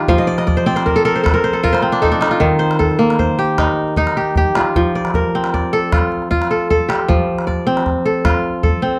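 A bright, ringing kora spins crisp fingerpicked arpeggios up front through this flowing, hypnotic West African string piece in 12/8, opening with a fill that runs until 2.4 seconds while a small, distant calabash plays along in a roomy space, the harmony moving between F and Eb on a dry, close 1970s-style recording cut from a longer piece.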